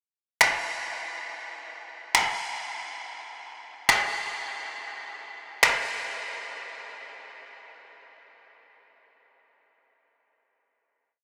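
Drenched in a huge ambient reverb, this blown-out, overdriven recording floats in a blissful, dreamy haze of atmospheric cloud-rap hip hop in free time. Electronic finger snaps, produced and gritty with overdrive, sit up front from 0.4 to 5.7 seconds, tapping out a sparse half-time beat through the breakdown. The whole piece closes on a final hit from 6.5 seconds.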